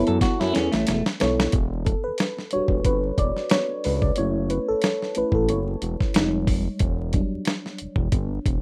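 Sultry and soulful, this short neo-soul R&B excerpt sits at 91 BPM in E dorian with a light swing on the sixteenths, and it carries the rough, crackly air of a home demo. A dusty, sampler-style drum kit sits up front with a gritty, compressed sound, a thumpy kick and a medium-tuned snare, and it plays a fill from 0.2 to 1.5 seconds. Beneath it, a fat analog bass with a thick, detuned sawtooth tone holds the low end, while bright, high-tuned congas play very quietly in the background. A clean, fingered electric guitar with a warbly pitch drift and plate reverb appears only in the opening second. From 1.5 seconds the mellow FM electric piano takes a solo, its round, full-bodied, dark tone colored by chorus, phaser and plate reverb, moving through Em7, F#m7 and a brief Fm7 before settling back on Em7.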